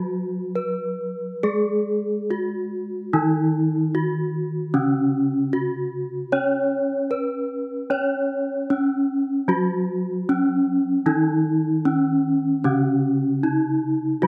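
Two bronze gamelan metallophones ring out together from the start of this serene excerpt, the upper one carrying the melody with a full, dry, close-miked tone from its wooden mallet, while the lower one plays accompaniment with a brighter, horn-mallet attack that sits mid-forward yet still up front. Both are paired-tuned, so their notes carry shimmering beats that give the straight, steady pulse a gently wavering glow. A new section begins at 4.7 seconds, and the detailed close sound sits within a moderate recital-hall reverb.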